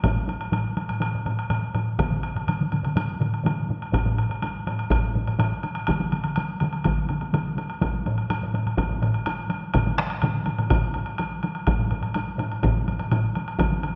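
Japanese traditional taiko drum ensemble music, driving and ceremonial in a straight 4/4, cut from a longer piece, where several layers of heavy-stick taiko, most close and dry, one in a small room and one set in the background, with another joining at 2.0 s, pound together over a woody woodblock in a live room, all carried by a recital hall reverb.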